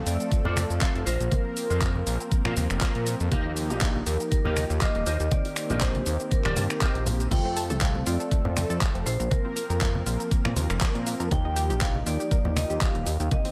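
A fat, saturated sawtooth bass sits up front in this sleek, groovy nu-disco excerpt, its detuned tone evolving under a filter pluck while sidechain pumping makes it breathe against an overdriven, knocking electronic kick. The groove moves at 120 BPM in 4/4 with a light swing on the 16ths, filled out by a layered pop kit of warm hats, snaps, handclaps, shaker and crash, plus soft-handed congas and bongos tucked close and dry in the background. Over the chords F, Bbsus2, Ebadd9 and Cm7, a dark, ringing vibraphone carries the melody with a slow motor vibrato, while mellow, round synth brass, chorused and pumping, supplies sustained accompaniment beneath it. A bright, twangy guitar through an envelope filter plays a clean, picked riff until 7.1 seconds, and at 7.3 seconds a soft analog pluck with a sub octave takes over with background arpeggios. Light reverb, digital ambience and diffuse delay on the melodic parts give the mix a glossy, spacious finish.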